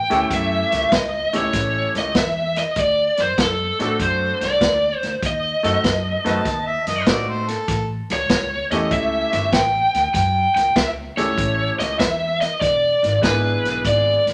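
A dark, overdriven lead guitar through a small cranked amp carries the melody up front in this laid-back, gritty electric blues shuffle, picked across the whole excerpt. Underneath, a bright, worn grand piano with short sustain fills in the accompaniment, while a woody pizzicato upright bass with steel strings anchors the low end. A vintage drum kit recorded in a small room keeps the 98 BPM groove in 4/4 with swung eighths, its punchy kick, medium-tuned snare and hi-hat sounding natural and rolled-off at the top. Between 6.3 and 7.9 seconds, a warm, overdriven harmonica slips in as a second line, its soft-attack, scooped notes carrying light vibrato in a jazz style. The harmony in A mixolydian moves from A7 to D7, through D#dim7, back to A7 and on to E7, all set in a moderate large studio reverb.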